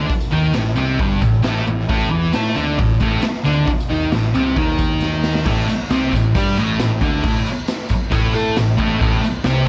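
A straight 4/4 pulse at 134 BPM drives this menacing, gritty garage rock excerpt, where a raw, up-front drum kit with a punchy kick, medium-tuned snare, hi-hat and crash rings in a bright stone room with saturated sampler grit, a thick, double-tracked fuzz guitar riff sits up front beside a growly, overdriven picked electric bass, a jingly tambourine jangles in the background, and a drum fill from 5.0 to 5.5 s pushes the tune from A minor onto a C power chord, all under light reverb and a cassette-tape sheen.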